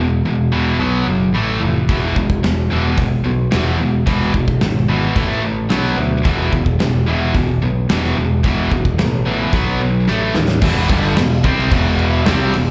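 Hard rock at 110 BPM in E minor, this aggressive, driving clip is cut from a longer piece and sounds like a live gig heard through a club PA with a light reverb. Two bright electric guitars play the riff from the first moment: one cranked and overdriven, the other scooped and high-gain with distortion, both carrying a slapback echo and moving through power chords on E, B and A. A growly, punchy picked bass sits up front beneath them, direct and bright. The big rock kit enters at 1.9 seconds with a dark, smooth big-room sound, a punchy kick, a medium-tuned snare, hi-hat and crash cymbal. A drum fill at 10.1 seconds leads into a new section at 10.6 seconds, where the harmony lands on a full E minor chord.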